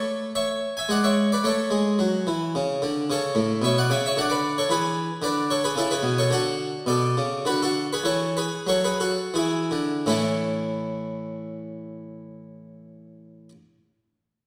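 In a flowing triple metre with a supple rubato, this flowing, dance-like, baroque-style suite movement is played by a solo harpsichord from 0.0 to 13.5 seconds, its brilliant, plucked Flemish-style tone and doubled octave strings sitting close and up front, framed by a recital hall's reverb. The harmony moves through chords such as A, E/G#, Bm/D, E7 and D6, easing into a slowdown from 5.5 to 10.1 seconds before a new section opens on A, all in a passage cut from a longer piece.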